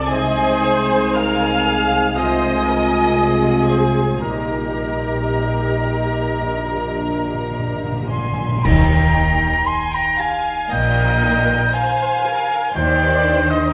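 A distant, roomy solo oboe sings a second line over lush, vibrato-rich violins carrying the melody in this serene, romantic slow movement for symphony orchestra in Eb major, taken from a longer piece and moving with rubato at 53-63 BPM. Focused second violins, expressive violas with portamento, a quiet ringing harp in arpeggios, an airy flute section with crisp attacks, mellow horn chords, and smooth cellos above clear, intense double basses fill out the texture. Bright cymbals, clash cymbals, bass drum and round soft-mallet timpani enter at 4.2 seconds, with a timpani fill leading to a full accent at 8.6 seconds, all set in a wet scoring-stage reverb.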